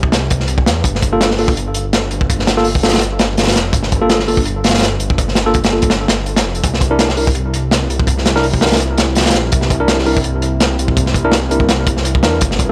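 Nostalgic and raw, this drum and bass and jungle excerpt at 166 BPM with a 55% swing on the 16ths pairs a crunchy, saturated breakbeat kit of hi-hat, tight kick and medium-tuned snare, up front with a rolled-off top, with a dark, rumbling detuned saw bass from the start, while clean tine electric piano stabs with dub echo enter at 1.1 seconds over Gm7 and then C7, and a warbling, lo-fi pad with chorus, phaser and built-in reverb drifts in behind at 7.4 seconds, all captured as a dry, gritty hardware recording with cassette tape and transformer saturation.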